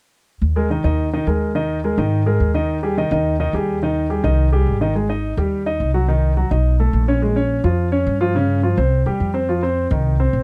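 An upright bass opens at 0.4 s, its plucked steel strings sounding woody and growly up front, and a clear grand piano joins at 0.6 s with an intimate, natural tone and audible action noise as it plays accompaniment. This lively, sophisticated Afro-Cuban jazz moves at a brisk 212 BPM in Ab major, with the harmony colored by suspended, diminished, ninth and #11 chords. The recording has a dry, close 1970s studio sound in a small room, and this short passage is cut from a longer piece.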